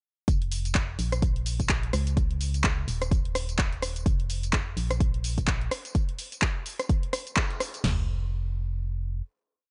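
A four-on-the-floor kick at 127 BPM with a 58% swing on the sixteenths drives this soulful, energetic piano house piece, its punchy electronic kit of kick, snare, floor tom and crash layered up front with programmed closed and open hats, tambourine, rim click and a handclap backbeat, while a hollow, dark, organ-like FM bass with fast, decaying notes pumps under sidechain compression in step with the chord rhythm, the piece running as one drop from 0.3 s to a band accent at 7.4 s before the bass carries on alone as a final note until 9.2 s in a digital ambience.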